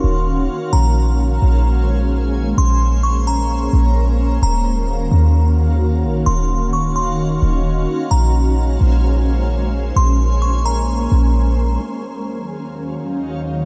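This ethereal, spacious half-time hip hop excerpt opens with a deep, boomy 808-style bass up front, a shimmering, dark pad carrying sustained chords through chorus and phaser, a glassy FM bell melody trailing diffuse ambient delay, and a faint reversed, swelling texture with detuned, granular sheen. Built on Ebm9 and Bbm9 chords, the dreamy mix is soaked in a huge ambient reverb. The bell drops out at 12.2 seconds after a filter sweep begins at 11.8 seconds, and the pad and reversed texture carry on to 13.7 seconds.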